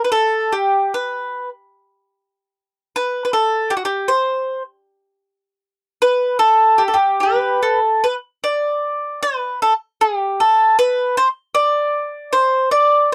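In a free, rubato two-beat pulse, this mournful, longing fado fragment features a lone bowl-back mandolin, warm and picked on double strings, sitting up front in a dry, close 1970s-style studio sound with light reverb as it spans F#4 to D5 and shifts into a new section at 8.0 seconds before the cut at 13.1 seconds.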